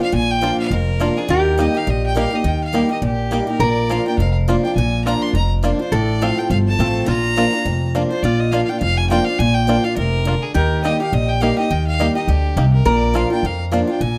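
Bluegrass in B-flat major at a brisk 207 BPM with a swung eighth-note lilt, lively and rustic, cut from a longer piece and heard through close, detailed microphones with light reverb. A clear, earthy bowed fiddle with light vibrato carries the melody in plate reverb, joined at 0.4 seconds by a twangy, percussive fingerpicked banjo on a second melody line, also in plate reverb. A nasal, metallic lap resonator guitar played with slide adds a second line, while an up-front, boxy archtop guitar with old strings picks the accompaniment and a thumpy, woody pizzicato upright bass anchors the low end.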